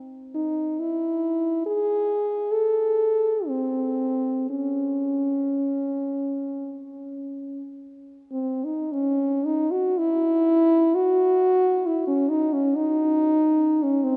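Drenched in a cathedral reverb with a long tail of 4.9 seconds, this classical fragment from a longer piece presents a dark, smooth-topped French horn playing entirely alone and up front, from 0.3 to 14.2 s. The mood is mournful and yearning, with the horn shaping its line in free, expressive rubato over a loose 4/4. The opening phrase returns at 8.9 s, restating the same material before the fragment breaks off.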